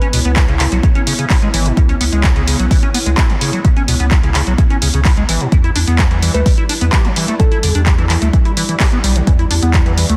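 This trippy, hypnotic acid house excerpt opens on a dark, detuned analog pad, a squelchy, resonant acid bass riff and a punchy analog drum machine playing handclaps and hi-hat, with a brief, gentle FM lead note in the background. A deep, round sine sub bass and a punchy electronic kick arrive almost at once, the kick landing at 0.4 seconds and sitting up front, both it and the drum machine re-recorded in a large room. At 128 BPM in a straight 4/4, the sawtooth-and-triangle pad holds sustained chords with a sub octave and chorus, pumping against the kick along with the acid and sub bass. The square-wave acid line is driven with overdrive, lush chorus, digital delay and a filter sweep, while the harmony in C# phrygian moves from C#m7 to Em7 at 5.5 seconds. The keys-like lead, touched with vibrato, chorus and delay, returns at 6.3 seconds for a short melodic phrase. Light reverb surrounds a dense, heavily limited modern master.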